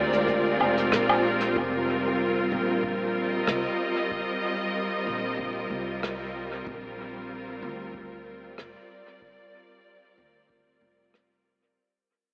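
A dreamy mix with an AM radio sound, soaked in lush hall reverb, frames this short piece cut from a longer work, which fades out from 1.6 s to its close. It is spacious, deep ambient dub at 94 BPM in 4/4 with a light swing, set in F dorian and moving from Bb9 to Fsus2 and then to Bbadd9. A clear studio string section sits up front yet distant, holding smooth, even, bowed chords with vibrato, while a dark, woody, growly upright bass plays pizzicato far beneath. A jazz brush kit of hi-hat, rim click and woodblock carries dub echo, and an analog electronic kick, re-recorded in a large room, stays in the background. For only the opening 1.6 s, a calm, glassy texture of drifting sine overtones with chorus hovers behind the strings.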